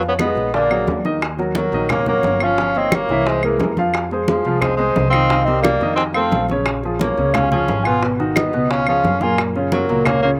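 A breathy, whispered tenor saxophone with subtone and scooped notes sits up front, carrying a second line beneath a soft octave-layered synth lead, whose round, mellow tone is touched with chorus and vibrato, in this sultry, fiery Afro-Cuban jazz excerpt in Bb minor at 176 BPM. A natural-sounding baby grand piano supplies accompaniment and a woody pizzicato upright bass anchors the low end, while ringing congas, low-tuned bongos played with soft hands, and claves sit in the background. Slapback echo colours the lead, saxophone, piano, bongos and claves in a dry, open-air sound, as the harmony moves from Fm7b5 toward Gbmaj7.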